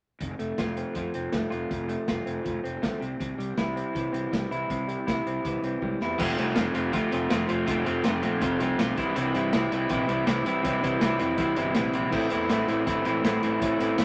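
Wistful yet carefree, this indie rock excerpt in straight 4/4 opens on a slightly broken-up, lo-fi guitar riff played up front through a small old amp, backed by a growly, overdriven fuzz bass and a muffled vintage drum kit with dark cymbals and a punchy kick, as the chords move between F and C. After a drum fill at 5.8 seconds, a clean, compressed twelve-string electric guitar enters at 6.2 seconds with its own picked riff in the background, and the progression reaches A minor at 12.1 seconds. A moderate studio reverb frames the whole ensemble.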